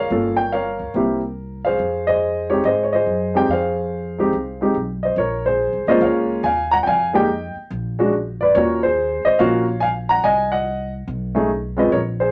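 Jazz piano trio in a moody, smoky swing, cut from a longer piece, where an up-front, warm baby grand carries the melody over a woody pizzicato upright bass sitting well beneath it, both playing throughout in a moderate studio ambience as the harmony moves to B-flat minor with minor-ninth chords at 5.2 s.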